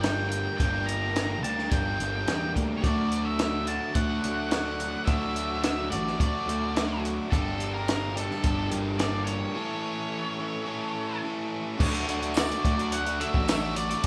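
A dark, fuzz-drenched lead guitar carries the melody across this wistful yet upbeat indie rock excerpt, which moves at 107 BPM in a straight 4/4 around D major. Beneath it, a round, punchy fuzz bass with overdrive drives the low end, while two overdriven electric guitars, one biting and one compressed, sit in the background playing riffs. A compact cocktail drum kit sounds acoustic and up front, with a high-tuned snare, punchy kick, hi-hat and crash cymbal giving a dark, smooth pulse. A very quiet vintage string machine voicing violas holds sustained sawtooth chords with a soft attack and ensemble chorus, shifting from Gm through Dadd9 and Gmadd9 to A during a break from 9.6 to 11.8 seconds. A jingly, saturated tambourine slips in briefly at 12.3 seconds, shortly after the music returns to Dadd9, and the whole band plays live in one room with a moderate large studio reverb.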